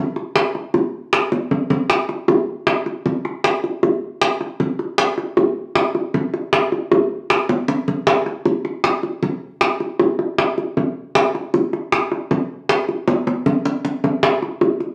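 The bongos come in at 0.2 s, their low-tuned heads sounding round and played with soft hands, placed up front in a wet studio reverb. This is a danceable, sultry Latin groove at 156 BPM in a straight 4/4, carried entirely by hand percussion. The drums have an acoustic, vintage character and a band-limited tone that suits the dark overall production. Short fills appear at 1.3 s, at 7.5 s leading into the second section, and at 13.1 s near the close. The passage is cut from a longer piece, and the bongos play until 14.9 s.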